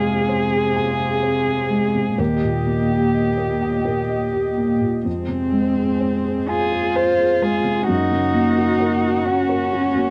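A muted violin and muted cello, each a single bowed player con sordino, open together over a felt-muted upright piano and a soft analog pad, all four sounding from the start of this slow, rubato neoclassical piece in F minor at 42 BPM in 6/8, carrying a mood of longing and melancholy. The veiled violin sings the melody up front with vibrato and portamento, the cello adds a close second line, while the intimate, thick-felt piano accompanies with a vintage mellowness and the detuned sawtooth pad, treated with chorus, sits in the background holding sustained chords. Light reverb and a dark production frame a phrase heard twice, moving from Fm to Eb and then from Fm to Gb at 7.9 seconds, within a passage cut from a longer piece.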